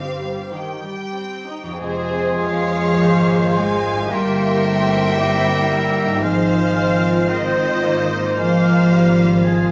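A slow, rubato pulse in 4/4 drifts between 46 and 58 BPM in this solemn, yearning excerpt from a romantic symphonic movement in F minor, tuned to A4 = 437 Hz. Lush bowed violins carry the expressive melody with soft attacks and vibrato, while a focused, distant second violin section traces a line beneath them, and smooth, even violas sit in the background as accompaniment. The cello section is the most prominent voice, its clear, intense bass underpinned by distant double basses and a very quiet, ringing, fingerpicked concert harp playing arpeggios. At 1.8 seconds the harmony shifts from C minor to F minor and the winds enter: an airy, bright flute ensemble high above, a present solo oboe, a close-miked bassoon, and a mellow horn section holding soft sustained chords. A generous recital hall reverb surrounds the orchestra as the chords move through E diminished over G and settle on F minor over A-flat.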